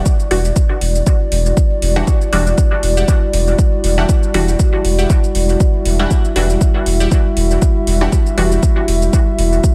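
An overdriven deep kick drum sits up front in this meditative, cavernous dub techno excerpt at 119 BPM in E minor, with a 56% swing on the 16ths, joined by metallic, overdriven shakers and hi-hats and a round, sine-like analog bass holding E1 under the sidechain pumping. A dark, nasal analog pad with slow attack and chorus sustains an Em9 chord throughout, while a muted, wave-folded dub chord stab with phaser and dub echo plays short resonant stabs until 8.5 s. A crisp digital wavetable stab riff with dub echo sits in the background until 8.2 s, all in a dry room with little reverb.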